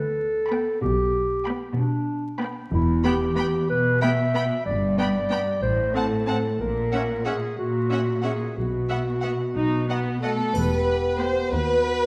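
A dark solo clarinet and a lush, up-front cello section open this quirky, magical film cue in a straight 6/8, soon joined by focused violin sections carrying a soft high melody and a second line, vibrato-rich violas and smooth, even double basses, before distant, roomy French horns and a faint background triangle arrive at 10.6 seconds, all set in a moderate scoring-stage reverb beneath a layer of vinyl crackle in this short cut from a longer piece.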